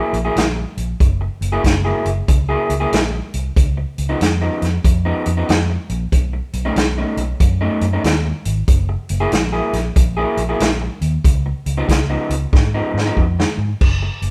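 Gritty and rollicking, this electric blues shuffle rolls along at 94 BPM with a swung feel, cycling through F#9, C#9 and B9 chords in a cut from a longer piece. An electric guitar through a small old amp plays a picked, slightly broken-up riff with a lo-fi edge, over a dark, round, foam-muted fingered electric bass and a vintage drum kit with a punchy kick and rolled-off top. The band sounds like it is playing live in one room with light reverb, and a drum fill runs from 12.5 to 13.8 seconds near the close.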